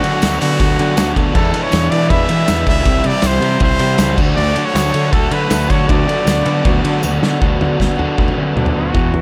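An echo-heavy mix in a small room gives this upbeat, wistful indie rock fragment at 159 BPM its roomy feel, with a clear, close-miked trumpet carrying the melody in light vibrato through dub echo. An overdriven guitar riff and a punchy, fuzz-soaked picked bass drive it, while a slightly broken-up guitar through a small old amp plays a chorused, echoing riff in the background. A loose acoustic drum kit with dark cymbals sits up front and plays a fill at 7.0 seconds; a bright, jingly tambourine adds texture until 7.1 seconds, and a very quiet, silky analog string pad does the same until it drops out at 7.4 seconds.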